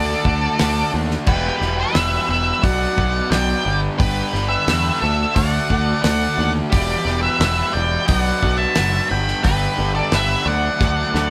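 An up-front octave-fuzz lead guitar carries the melody in this brooding, driving classic rock excerpt, its dark, distorted tone joined by a second fuzzed guitar line sitting just beneath it. At 88 BPM in a straight 4/4 and in E minor, the band cycles through D, Em, Bm and G, with two guitars playing riffs in the background: one bright and compressed, the other a raw garage part with a warm, overdriven edge. A picked electric bass sits up front with a round, direct sound, anchoring the low end. The damped 70s drum kit enters at 0.3 seconds, dry and mid-forward with a fat snare and tight kick, and closes with a fill from 10.8 seconds. Light reverb gives the feel of a band playing live together in one room.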